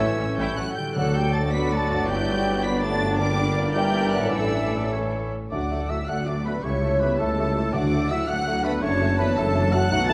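Spirited and lively, this fast romantic orchestral passage in D major moves in a rubato 6/8 at roughly 100-112 dotted-quarter beats per minute, cut from a longer piece. A lush, expressive violin section carries the melody high above the orchestra, while a bright oboe, an airy flute section, a dark clarinet and a second, clearer violin section weave supporting lines in the background. Beneath them, a very quiet viola section and a warm bassoon fill out the accompaniment, a mellow horn section holds sustained chords, and a ringing concert harp plays arpeggios. The bass is built from a distant double bass section, a focused cello section and a very quiet tuba, with hard-mallet timpani striking at the opening and again near 7.7 seconds. At 5.5 seconds the music reaches a new section, where a very quiet trombone section adds held chords and a distant, roomy trumpet punctuates with stabs. The harmony passes from D through Gmaj7 and a darkening Gm to a suspended A before resolving home to D, all set in a moderate concert hall reverb with a dark production.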